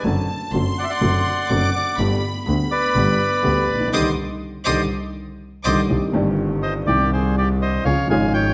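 Tango in C harmonic minor at 123 BPM with a rubato feel, this melancholic, dramatic excerpt is led by a reedy, vintage bandoneon carrying the melody up front. A biting, intense studio violin section plays a high second line until 5.8 s, while a dark, woody, slightly detuned upright piano supplies boxy accompaniment and a bowed double bass adds a nasal, earthy low end. The band hits an accent from 3.9 s before the music moves into a new section at 5.9 s, all set in a moderate recital hall reverb with a warm, dark production.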